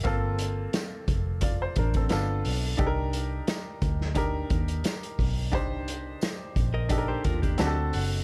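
A clear, up-front baby grand piano carries this bittersweet, silky excerpt of lush 1970s-style soul over a punchy, small-room vintage drum kit, a round, foam-muted fingered bass and a jingly tambourine set far back, while a bright, compressed clean electric guitar adds a spring-reverb riff at 6.7 s before the piano closes with a fill from 7.3 s, all within a dark studio production.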